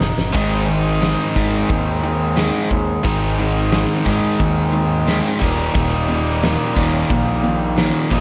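Confident and driving, this classic rock excerpt moves at 89 BPM in a straight 4/4, cut from a longer piece. It opens with a short drum fill on the big rock drum kit, whose fat snare, tight kick and hi-hat ring in a bright stone room. Two overdriven guitars play the riff together throughout: a biting, up-front guitar spanning Eb2 to Eb4, and a semi-hollow guitar with a hollow-body tone reaching from Eb2 to Ab3. Beneath them, a growling fingered electric bass with its own overdrive sits low between Eb1 and Eb2. The harmony rests on Ab from 0.3 seconds before moving to Eb at 5.4 seconds, and a light reverb gives the whole band a touch of space.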